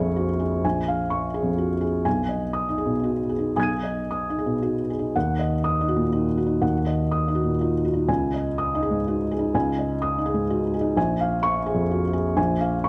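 A felt-muted upright piano plays alone from the first moment, its thick felt giving a soft, dark, intimate tone with the mechanical action noise audible up front. This melancholic, reflective neoclassical minimalist piece sits in Eb minor in 3/4, moving with a rubato feel somewhere between 109 and 129 BPM as the harmony passes from Bbm7 through Ebm and Dbsus2 before returning to Bbm7 at 11.0 seconds. The close, mellow piano is set in a recital hall reverb, and the 12.9-second fragment is cut from a longer piece, with the opening phrase restated from 5.2 seconds.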